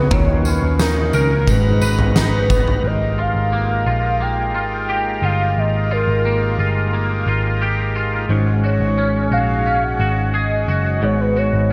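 Ethereal and melancholic, this dream pop passage floats on a velvety, chorused synth lead melody with tape echo, a twangy electric guitar playing arpeggios through ensemble chorus, sustained chords from a gritty overdriven tonewheel organ turning through a slow rotary speaker, and a dark, round, foam-muted picked bass, while an oversized low-tuned drum kit with a boomy kick and fat snare pumps in a big room only from 0.1 to 2.8 s before the harmony shifts to D#add9 at 2.8 s.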